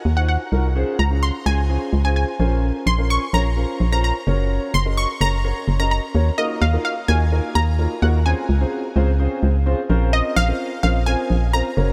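A hollow, organ-like FM bass sits up front in this short dance-pop excerpt, its percussive fast attack and dark decay driving the low end between Gb1 and Eb2. The track moves at 128 BPM in a straight 4/4, in Eb dorian tuned to A4 = 439 Hz, and the mood is bittersweet yet driving. Above it, an analog pluck carries the melody between Eb5 and Db6, a round, detuned sawtooth tone with a noise layer and an evolving filter sweep, bright at its edge and given chorus and tape echo. A mellow, deep-bodied concert grand piano supplies accompaniment from Bb3 to Eb5, bathed in lush chorus and set back in the mix. The harmony cycles through Ebmadd9, Dbmaj7, Bbmadd9 and Gb as a build-up runs to 6.4 seconds, where the drop arrives and the progression returns to Ebmadd9. Light studio reverb gives the whole a polished, roomy finish.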